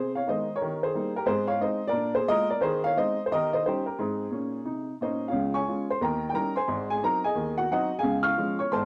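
Worn, warbling old cassette tape with a drifting pitch and light reverb gives this short cut from a longer stride piano performance its faded character. A clear, woody, boxy upright piano sits up front and plays solo throughout, swinging exuberantly at 178 BPM in 4/4 across a range from Ab1 to F6. It is playful in Ab major before moving to Db major at 5.3 s.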